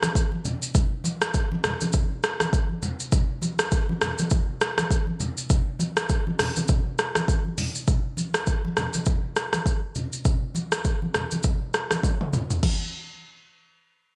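A layered, up-front electronic deep house drum kit and distant, soft-handed congas open this romantic, breezy afrobeats excerpt together, the kit's deep kick, hi-hat, rim click, shaker, crash and toms carrying tape-warm 12-bit sampler grit and gated reverb over a swung sixteenth-note feel, while the bright, thin-skinned congas sit back in a large room, all within a bright 1980s-style digital production with light reverb, and a drum fill at 12.0 seconds leads into a brief closing section.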